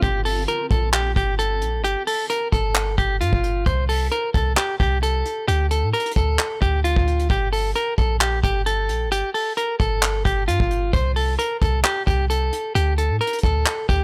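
Eerie and hard-hitting, this trap-flavored hip hop excerpt moves at 132 BPM in a half-time feel in G minor. A clean electric guitar carries the melody up front, its picked, compressed tone sounding scooped as it stays between F4 and C5. Beneath it, a clean 808-style bass delivers deep, boomy sine tones with a fast attack that decay into a dark low end. A soft brush drum kit with a natural, acoustic studio-room character supplies a tight kick, hi-hat and handclaps, all three parts playing together from 0.0 to 14.0 seconds. The harmony travels from Gm through Am/C and Dm, returns to Gm, passes through Am/C again, and closes on a bare D5 around 12.8 seconds. A small room reverb frames the dry, gritty hardware sound.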